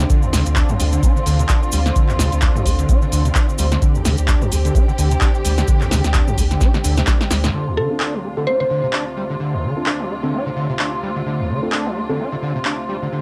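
Driving and hypnotic, this acid house excerpt at 129 BPM in D minor sets a squelchy, distorted acid bass riff with chorus and tape echo against dark, distant symphonic strings on a Dm7 chord, a round sine sub bass, an up-front dry electronic kick, a punchy analog drum machine with handclaps, hi-hat, snare and toms, and a grainy close cabasa, until a drum fill at 6.6 seconds gives way at 7.5 seconds to a new section where the kick, sub bass and cabasa have stopped and a woody FM mallet-like pluck and soft, deep chord stabs with analog chorus and tape echo appear over the strings, acid bass and drum machine, all softened by a cassette home-recording sound with light reverb.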